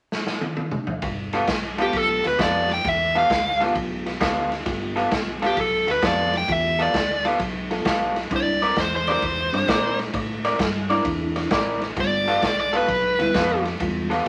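A gritty, swaggering electric blues shuffle cut from a longer piece opens with a raw garage drum kit playing a fill at 0.1 s, its punchy kick and saturated, rolled-off sound sitting up front in a bright stone room. At 1.0 s a slightly broken-up, lo-fi electric guitar riff through a small old amp and a deep, round fingered bass come in over G9 and C9 chords, joined at 1.8 s by a reedy, worn, slightly out-of-tune electric piano with fast tremolo and a dark, smooth overdriven lead guitar carrying the melody up front. A club reverb and vinyl crackle give the whole recording a dusty, lived-in feel.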